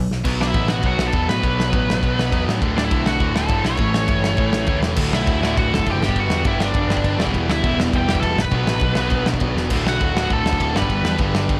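This punk rock cut opens with a stack of rhythm guitars playing the riff: a bright overdriven electric, a dark hollow-body semi-hollow and a very quiet, double-tracked fuzz guitar. Beneath them sits a growly, punchy picked bass, while a loose small-room drum kit with dark cymbals and a tight kick comes in up front with a fill. From 0.4 seconds a high-gain lead guitar with tape echo carries the melody over chords moving through Bm, D, A, G and Em, and the rebellious, energetic drive stays dry and close throughout, with another drum fill at 9.6 seconds.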